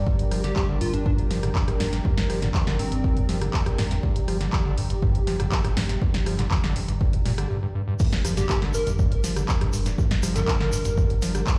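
A squelchy, gritty acid bass riff with tube saturation and digital delay drives this trippy acid house cut, pumping over a round sine sub bass, a punchy, up-front analog kick and a drum machine of snare, handclaps, hi-hat, rim click, crash and toms, all set in a large, roomy reverb. A smooth, detuned sawtooth pad fades in beneath an airy, breathy ring-modulated texture until a short break at 7.5 seconds. At the drop at 8.0 seconds a grainy, vintage egg shaker joins, and a catchy, bright unison lead with a filter sweep and delay returns from its opening phrase.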